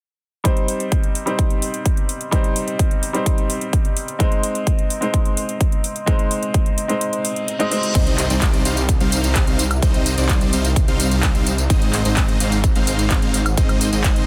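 A dense, heavily limited modern master in a digital ambience carries this powerful, anthemic slice of festival progressive house, cut from a longer piece. A clear, worn grand piano opens at 0.4 s with accompaniment, pumping with sidechain and trailed by tape echo. A punchy, up-front electronic kick and a layered big-room kit of metallic hats, handclaps, tambourine, woodblock and crash cymbal drive the straight 4/4 groove. The kick drops out for a moment while a very quiet reverse cymbal leads to the drop at 8.0 s, marked by a very quiet electronic impact. There a huge, full-bodied supersaw riff, detuned in unison with a sub octave, vibrato, sidechain pumping and tape echo, takes the front alongside a lush, saturated saw bass coloured by chorus.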